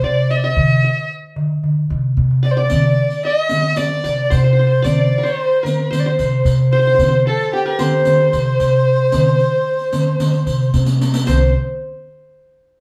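Arabic maqam ensemble music, festive and stately, in which an up-front bowed violin with a dark, woody, vibrato-rich tone carries the melody over a mellow, bright-edged qanun second line and a pizzicato steel-string upright bass, while a distant clay-shell darbuka struck with hard hands plays throughout, fills at 2.2 seconds and is joined at 2.7 seconds by a softly played riq with dusky jingles, the band playing live together in one room with a wet studio reverb in this passage cut from a longer piece.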